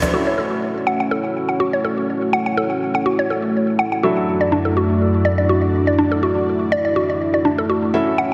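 Hypnotic and spiritual, this brief house fragment from a longer piece moves at 123 BPM in F# minor with a light swing on the 16ths, shifting from F#m7 to Dadd9/F# at 4.0 seconds. A dark, smooth analog pad holds detuned sawtooth chords up front, while a woody, round mallet-like synth pluck spins chorused arpeggios through digital delay. A felt-muted upright piano enters at 0.1 seconds with soft, intimate stabs behind a low-pass filter, all set in a lush hall reverb with a heavily compressed, radio-like sound.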